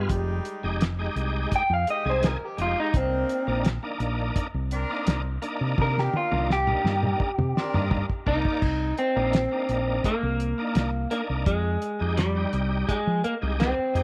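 A slightly broken-up, lo-fi electric guitar opens this smoky, mournful soul blues in C minor at 84 BPM, soloing up front through a small old amp with slapback echo while a bright, shouting tonewheel organ with overdrive, chorus vibrato and a slow rotary speaker and a round, fingered electric bass fill in beneath. A cloth-damped, thuddy drum kit with dark cymbals and a fat snare joins almost at once, playing a fill from 5.8 to 8.6 seconds, as a mellow horn section holds soft-attack, octave-doubled chords until 8.1 seconds. The harmony moves from Fm9 to Cm9 and back to Fm9 in a light, small-room reverb, and this excerpt is cut from a longer piece.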